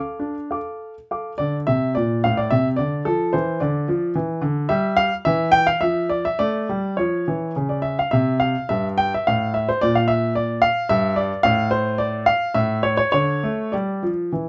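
A solo grand piano carries this classical-period sonatina, its tone warm, intimate and natural, with the clatter of the action audible close up. The mood is dramatic yet elegant, unfolding in triple metre with a freely breathing rubato feel. The player ranges from G2 up to D6. The harmony circles the minor home chord, touching on a suspended colour and a brief turn to the dominant before returning at 13.1 seconds. A light reverb gives the up-front piano a modest sense of space. This short passage is cut from a longer piece.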